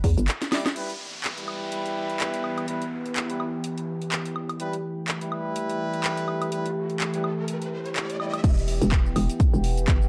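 A hollow, knocking FM bass drives this aggressive, bouncy bass house excerpt in E minor at 125 BPM, dropping out after a brief opening hit as a drum fill leads into a long stretch where brilliant, tight horn stabs with dub echo ride over a resonant, wave-folded pad that swells through a filter sweep with chorus and phaser, while the overdriven house kit keeps its cracking snare and bright hats going and a downlifter and riser sound through the section, the riser building from 5.9 seconds until the punchy kick and bass return for the drop at 8.4 seconds, with the bass, horns and pad pumping under a dark, lightly reverberant production.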